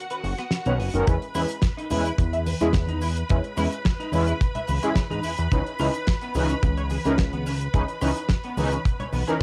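Nu-disco at 108 BPM in a straight 4/4, this groovy, feel-good excerpt from a longer piece opens with a short break over Bmaj9 before the dry, tight kick drum and soft-handed cabasa and congas arrive at 1.1 s, moving through E6 to C#m9 at 5.5 s. A fat, detuned sawtooth bass sits up front beside mellow, round synth brass with chorus, tape echo and sidechain pumping, while a dark, clean picked electric guitar riff with ensemble chorus and a damped 70s kit with a fat snare, rim clicks and hi-hat fill out the groove. Above it all, a biting, distant string section holds lush sustained chords with its own pumping, and the cassette-tape home recording carries light reverb.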